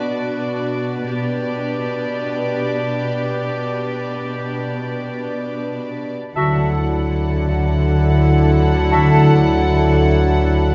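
Moving and uplifting, this cinematic film-score fragment in D major drifts at 69 BPM in a rubato 3/4, opening on sul tasto strings: a floating, soft-attack violin second line, rich, soft-attack violas and dark, intimate cellos moving from Bm to G/B. At 6.4 seconds the orchestra blooms onto Dadd9 as a second violin section takes a light-vibrato melody, joined by a clear clarinet, a distant oboe and a pure flute section on brief second lines, mellow French horn chords in the background, faint ringing harp arpeggios and a woody double bass section up front. The scoring-stage reverb is wet and heard from further back in the room, giving the closing bars a soft, rounded glow.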